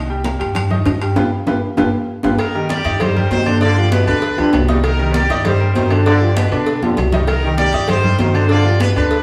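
A woody, pizzicato upright bass sits up front in this fiery, danceable salsa excerpt at 196 BPM in C minor, joined by a worn, intimate baby grand piano with audible action noise, high-tuned congas struck with hard hands, round low-tuned bongos and cowbell and ringing metal-shell timbales with agogo bells in the background, while a tight trumpet section with light vibrato takes the melody from 2.4 seconds over a trombone section's second line, the band playing live in a small stone room with a wet reverb over a Cm7 to G7 vamp.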